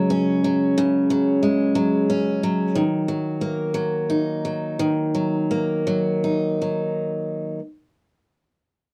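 A picked steel-string acoustic guitar sits up front, its warm, auditorium-sized tone carrying finger squeak as it plays an accompaniment figure in a pop setting with a melancholic, dramatic mood. The 6/8 phrase moves from a suspended chord to a minor one at 2.8 seconds, where the pace begins slowing until 7.0 seconds. The dry, close sound recalls a 1970s studio, and the guitar rings out alone until 7.6 seconds in this short cut from a longer piece.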